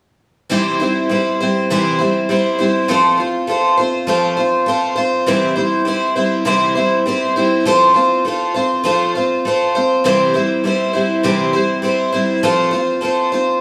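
A picked twelve-string acoustic guitar opens at 0.5 s and carries this short rock excerpt alone, its fresh strings bright and shimmering with an octave-doubled ring. The feel is nostalgic and open-road, moving at a steady 100 BPM in straight 4/4 in C major, tuned slightly low to A4 = 438 Hz. The guitar sits up front with a tape echo trailing its notes, and small finger squeaks surface in its picked playing. Its harmony rocks between C and F, and a second section begins at 5.3 s that keeps alternating the same two chords until the cut at 13.6 s. A moderate studio reverb gives the sound a sense of a modest room, and the passage is lifted from a longer piece.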